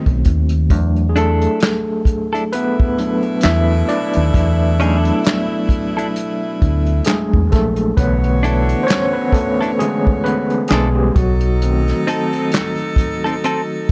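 A dark, intimate small-room sound frames this sultry, soulful neo-soul R&B excerpt at 66 BPM in B dorian, where a barky, overdriven tine electric piano with medium tremolo takes the lead over edgy saxophone section stabs, a round, deep dub fingered bass, an unplugged drum kit with a punchy kick, handclaps and bundle sticks, and a clean, scooped electric guitar second line entering at 1.2 seconds, moving through B7b9, E7sus4 and Bm11 chords.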